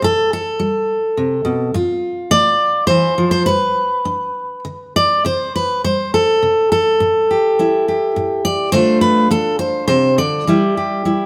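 Warm and peaceful, this short folk excerpt features a solo fingerpicked steel-string acoustic guitar in C major, moving in a rubato 3/4 at 104 BPM. The jumbo guitar sits up front with a full-bodied tone, spanning A2 to D5 through chords such as Gadd9/B, Dm/A, A7 and Em, with a second passage beginning at 5.3 seconds. A moderate stone-room reverb surrounds the live performance, tuned to A4 = 443 Hz.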